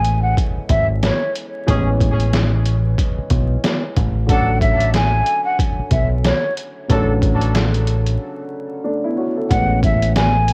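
A hazy, cassette-worn sound with vinyl crackle and light studio reverb frames this warm, nostalgic boom-bap hip-hop excerpt in A major, swung at 92 BPM as Amaj7 gives way to Bm7/A. A breathy, hollow flute carries the melody with vibrato and analog delay over a dark, woody upright piano, a round, punchy dub bass and an overdriven, muffled sampler-style kit with a thumpy kick, pitched down and compressed. A mellow trumpet section adds soft stabs from 1.7 to 7.1 seconds, and a break arrives at 8.2 seconds before the opening chord returns at 9.5 seconds.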